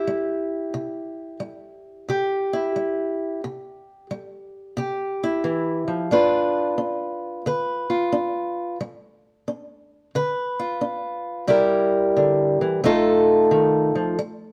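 A swung 4/4 groove at 89 BPM drives this rollicking, soulful blues in C major, cut from a longer piece. A fingerpicked old ladder-braced acoustic guitar sits up front, its dark, woody, boxy tone and aged strings moving from C to G7, then through C7 to F7 by 12.8 seconds. Captured live in one room, it carries a moderate stone-room reverb with a 1.1-second decay.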